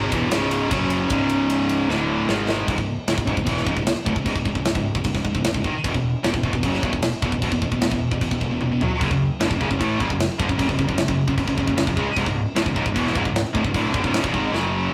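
Heavy metal in C# minor at 152 BPM in a straight 4/4, this excerpt from a longer piece feels epic and relentless. It opens in half time, with a drum fill from 1.9 to 2.7 seconds before the full-tempo groove takes hold. A tight, up-front metal kit drives the track with crash and ride cymbals, kick, a medium-tuned snare and toms, adding further fills near 9.0 and 14.9 seconds. Behind it sit three picked guitar riffs: a crunchy, double-tracked overdriven part, a bright high-gain part, and a scooped high-gain part that drops out after the opening and returns at 9.0 seconds. A growly fuzz bass, fingered and overdriven, anchors the low end as the chords move through C#m, E5 and F#5. The whole has the rough, saturated character of a rehearsal-room take, with light reverb.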